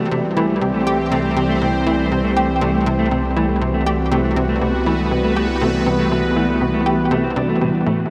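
A sweeping, resonant pad with chorus holds bright, detuned sustained chords up front over a C chord, while a punchy, nasal sequencer bass drives a riff with analog chorus and delay, a dark, clean electric guitar plays delayed arpeggios in the background, and a round sine sub bass hums underneath, all at 120 BPM in this mysterious, cosmic slice of ambient space music, drenched in a huge 8.6-second reverb for a dreamy sound.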